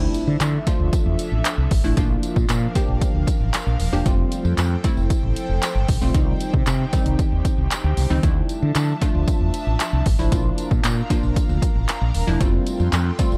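An overdriven deep house drum kit with a punchy kick, handclaps and hi-hat drives this upbeat, carefree dance-pop excerpt in F major at 115 BPM, joined up front by a round, mellow fretless electric bass and a faint, jingly tambourine in the background. A glassy wavetable pluck with chorus and a breathy, warbling pad both pump with sidechain compression, as does the bass, while a very quiet electronic impact sounds only in the opening 2.0 seconds. The chords cycle through Dmadd9, Bb, Fadd9 and Cm in a dark production with little reverb.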